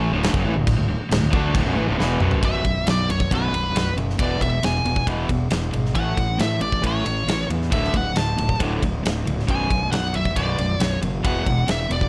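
An aggressive, menacing hard rock excerpt in B minor at 136 BPM opens with picked riffs from a cranked stack guitar, an overdriven semi-hollow guitar with spring reverb and a very quiet, double-tracked sludgy guitar that stops at 2.4 seconds, over a growly, fuzzed fingered bass, while a big, dark-toned acoustic kit with a punchy kick sits up front and fills into the second section, where a nasal lead guitar with a parked wah and slapback echo takes the melody from 2.5 seconds across chords moving from B5 through E, A and D5 in a small room.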